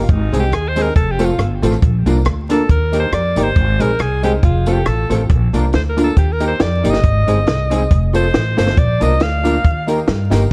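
A dark, warm production with light reverb, small-room ambience and a bed of vinyl crackle frames this upbeat, cheerful ska cut, taken from a longer piece and moving at 138 BPM in 4/4 with a gentle swing in Bb major. A bright, forceful alto saxophone carries the melody as a solo from the opening second, its vibrato and smooth top touched with tape echo. Underneath, a woody, thumpy upright bass with gut strings sits up front, plucked, while a compact cocktail drum kit keeps time with a high-tuned snare, punchy kick, rim click and hi-hat in a dry, natural sound. A dark, clean hollow-body jazz guitar provides picked accompaniment, and a jangly, boxy tack piano drops short stabs with tape echo from the background. A jingly tambourine sits far back in the mix as the harmony circles through Ab, F, Bb and Eb.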